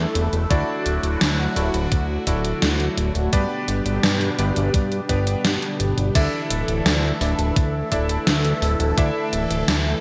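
A swirling, detuned analog pad with phaser, chorus and sidechain pumping opens this romantic, nostalgic synthwave excerpt in D major at 85 BPM, alongside cutting, vintage electric grand piano stabs with subtle chorus and digital delay and a fat, nasal, saturated analog bass, while a gated 80s digital drum machine with crash, hi-hat and gated-reverb snare enters at 0.2 s and a thumpy electronic kick joins at 0.5 s, the harmony moving through Asus4, Dadd9, G and Dsus2 in a lush hall reverb with a bright 1980s-style digital sheen.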